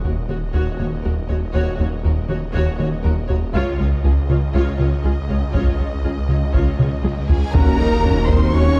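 A dark, reverberant hybrid orchestral and electronic film cue, relentless and vast, where lush bowed violin sections carry a melody and second line over expressive viola accompaniment, a bouncy, hollow square-wave bass riff, a snarling distorted saw bass, and cello and double bass sections, with a huge sub drop at the opening, hard-stick taiko drums joining at 3.5 seconds, a mellow French horn section entering on sustained chords at 7.3 seconds, and distant trombones adding chords as a reverse cymbal and impact arrive at 7.5 seconds.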